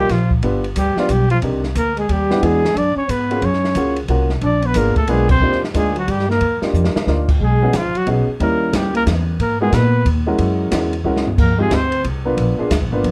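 Sophisticated and playful, this small-group swing and bop jazz excerpt moves at 181 BPM in a swung 3/4, with a breathy trumpet with light vibrato carrying the melody up front over a mellow trombone second line with scooped notes, a woody, boxy upright piano accompanying, a pizzicato upright bass, and a dark, smooth drum kit with a punchy kick, the band hitting an accent at 5.2 seconds and the drums adding fills at 6.7 and 11.1 seconds, all in light reverb.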